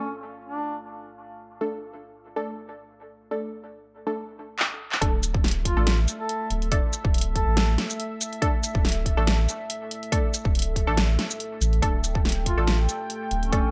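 Deep dubstep in a dark, brooding mood, where a moody, wave-folded ambient pad and muted, detuned chord stabs carry the opening, with brief phrases from a distant, roomy duduk with vibrato and dub echo drifting in and out, until a drum fill at 4.6 seconds leads into a drop at 5.0 seconds, bringing in a punchy kick, a huge up-front snare with handclaps, hi-hat and shaker, and a thick, saturated sub bass under a half-time groove.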